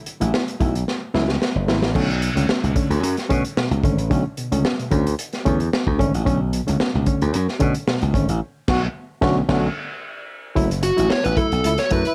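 Cool and funky, this cut from a longer funk piece grooves at 112 BPM in a straight 4/4 over F#m7 and Bm9 chords. It is built on a crunchy, gritty breakbeat kit recorded in a small room, with a punchy kick, high-tuned snare and dark cymbals, alongside a bright slap bass up front and barky, reedy electric piano stabs with light overdrive. After an opening drum fill, a breathy, whispered trombone enters at 8.7 seconds amid band accents, with scooped notes and light vibrato. A fuzzy, distorted lead guitar then takes a short solo from 10.8 seconds, all set in light reverb.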